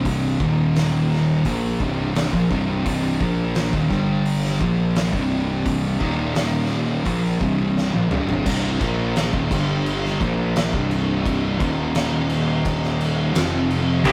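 A straight 4/4 pulse at 86 BPM drives this brooding, ominous stoner and doom metal excerpt in C minor, cut from a longer piece and built on power-chord riffs around C5, Eb5 and G5. Two thick fuzz guitars carry the riff together, one darker and up front, the other tucked in the background, over a growly, overdriven fuzz bass and an oversized low-tuned acoustic kit with a punchy kick, fat snare, dark cymbals and a pumping stone-room sound, which plays a fill from 7.8 to 8.5 seconds into the second section. At 14.0 seconds a bright, double-tracked, compressed distorted guitar bursts in up front just as the clip ends, all captured as a rough rehearsal-room recording with light reverb and warm saturation.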